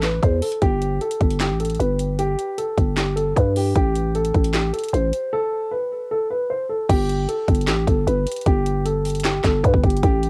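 A dry, home-cassette sound frames this brooding trap hip hop fragment in A minor at 153 BPM with a half-time feel, where a dark, boxy concert grand piano melody, softened by a low-pass filter, cassette tape color and tape echo, sits over a growling, buzzy 808-style bass and an up-front electronic kit of hard-clipped kick, sharp snare, metallic hi-hats, handclaps and crash cymbal, with a break from 5.3 to 6.9 seconds before the closing section.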